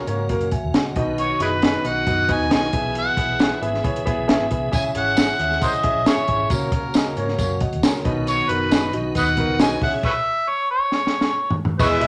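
An overdriven, gritty harmonica with tongue slaps leads this passionate, urgent uptempo 1960s-style soul excerpt at 136 BPM in C# dorian, over up-front polished grand piano, a piping tonewheel organ with chorus vibrato in the background, a round, foam-muted electric bass and a compact drum kit with a punchy kick and a high-tuned snare, while a jingly tambourine joins at 4.7 s, the piano fills at 7.4 s, the drums fill before a distant, roomy horn section enters at 11.8 s, and a large studio reverb surrounds the parts.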